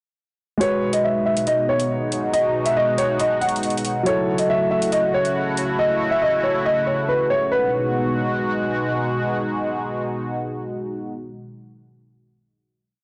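Drill hip hop with a tense, dark half-time feel, where a mellow, up-front grand piano loops a sampled-sounding melody through digital delay over held piano chords and a detuned, chorused sawtooth pad, while overdriven metallic hi-hats with skipping rolls drop out at 5.7 seconds, leaving piano and pad to settle onto a final chord from 7.5 seconds in a blown-out mix.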